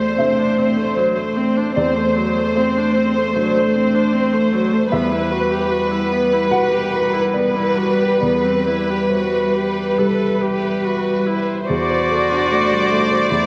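Flowing in an unhurried, rubato 4/4, this brief, longing fragment of neoclassical piano and strings drifts over chords moving from D7/E through Emadd9 and Cmaj7/E before returning to D7/E. A veiled, con sordino violin section carries the melody up front with light vibrato and a diffuse ambient delay, while a dark solo cello with portamento sings a second line and a muted viola and a mellow, woody upright piano with subtle chorus fill in the accompaniment. From 0.3 seconds a very quiet, glassy FM pad sustains ethereal chords beneath, and the whole reflective mix is soaked in plate reverb with a dreamy, vintage cassette-tape haze.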